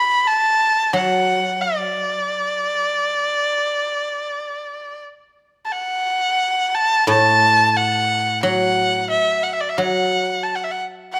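A rich, earthy solo erhu carries the festive yet graceful melody up front, bowed with light vibrato and sliding portamento over a straight 88 BPM pulse in this Chinese traditional piece, while a silvery, ringing guzheng played with fingerpicks adds low accompaniment from 0.9 to 3.0 seconds and again from 7.1 seconds on, all set in a moderately reverberant space that gives the short cut from a longer work an airy glow.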